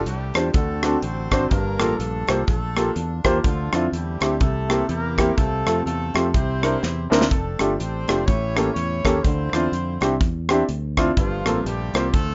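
A tight, jazz-style horn section with light vibrato, octave doubling and slapback echo opens this hopeful, uplifting swung gospel passage over a round fingered electric bass, joined at once by an airy, polished acoustic drum kit with punchy kick, rim clicks and a fill at 6.8 seconds, and from 0.4 seconds by an up-front, warm grand piano moving through rich chords such as F69, Gm9 and A7b9, the whole set in a small room and a rough, dull-topped home demo mix.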